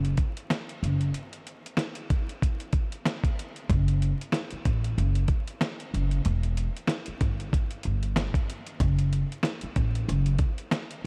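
Swung sixteenths at 94 BPM in 4/4 drive this dark, reflective boom-bap hip-hop excerpt in F# phrygian, where a gritty, compressed sampler-style kit with a thumpy kick, fat snare and hi-hat sits up front beside a woody pizzicato upright bass on steel strings, both starting at the opening, with a break from 1.1 to 3.7 seconds, a dry sound and a layer of vinyl crackle.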